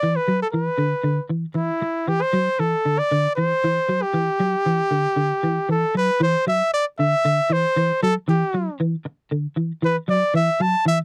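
A clear, close-miked trumpet leads this defiant, funky afrobeat cut, singing a pop-style solo with light vibrato up front over a lightly swung sixteenth-note groove. Beneath it, a clean, fingered semi-hollow electric guitar plays arpeggios in a low register, its warm hollow-body tone thickened by an ensemble chorus, while the music moves from one section into the next at 6.2 seconds. The dry, intimate sound has the moderate booth ambience of a 1970s-style studio.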